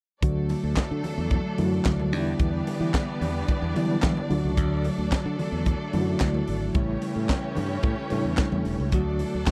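A tight funk drum kit sits up front in this glamorous, danceable disco excerpt at 110 BPM in 4/4 with a straight feel, its high-tuned snare, tight kick, hi-hat and handclaps driving from 0.2 seconds. A bright, growly fingered electric bass carries the low end, while a mellow, reedy electric piano with a fast tremolo fills in the accompaniment. A lush studio string section holds sustained bowed chords with vibrato and a smooth top, sitting a little further back in the mix. Very quiet, ringing congas played with hard hands join at 0.5 seconds, adding a vintage touch. The harmony in D major moves through D, Em7, D and A7 before settling back on D, all captured in a dry, close 1970s-style studio sound that runs to 9.5 seconds.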